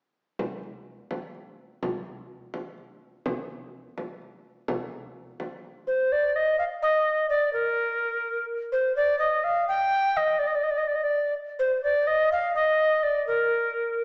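A medieval dance in 6/8 at 84 BPM, counted in dotted quarters, with a straight, driving feel and a mysterious air. It opens with a frame drum alone from 0.4 seconds, deep and large, its compressed, saturated sound sitting up front. At 5.9 seconds, as the drum stops, a tenor recorder takes over the melody between Bb4 and G5 and carries the second section through to 14.0 seconds. The recorder is woody and airy, with a crisp, chiffy attack, vibrato and an expressive, up-front presence. Both sit in a wet recital-hall reverb that suggests a church or concert hall, heard through a small-speaker sound, and the passage is cut from a longer piece.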